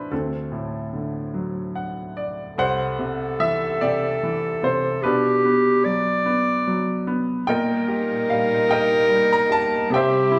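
Moving in a slow, straight 6/8 at 49 BPM counted in dotted quarters, this intimate, tender acoustic folk-pop ballad is cut from a longer piece and tuned slightly high at A4 = 441 Hz. A clear baby grand piano carries the melody from the start, its natural, short-sustained tone sitting up front across a broad range, and it plays a fill between 1.3 and 2.6 seconds. At 2.6 seconds a mellow clarinet enters with a second line in a classical style, soloistic and close to the listener. A dark chamber string section joins at 7.5 seconds with soft-attacked, bowed sustained chords played sul tasto, adding light vibrato and a smooth top. The harmony moves from D7 to C, then Gmaj7/B and Eb/Bb, while the band plays live together in one room with a large studio reverb giving the sound a wet, roomy glow.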